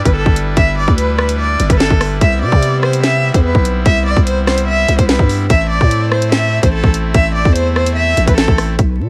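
Hip hop drill at 146 BPM in a half-time 4/4 feel, dark and menacing, cut from a longer piece and set in a dry room with vinyl crackle over chords of G6, Cmaj7 and Am. A close, bowed solo cello carries the melody from 0.0 s with vibrato and portamento, its expressive warm tone softened by a low-pass filter, while a pipe organ's brassy trumpet stop holds sustained chords in a baroque voicing with a bright chiff. Up front, a growling, buzzy 808-style bass with a fast attack and decaying tail sits under an electronic drill kit whose hard-clipped kick, sharp snare, bright hi-hats and rim clicks enter at 0.1 s.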